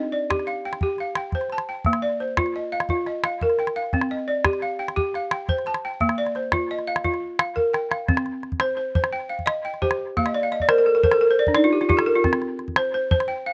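A straight 12/8 pulse at 116 BPM carries this flowing, reflective West African string and xylophone excerpt in C dorian, where a woody, buzzing balafon struck with hard rubber mallets sits up front spinning arpeggios over Cm and Bb chords while a small, close calabash keeps the percussion beside it. A drum fill at 7.6 seconds ushers in a second section, and a balafon fill arrives at 10.2 seconds before the music settles on a C5 chord, captured dry in the open air.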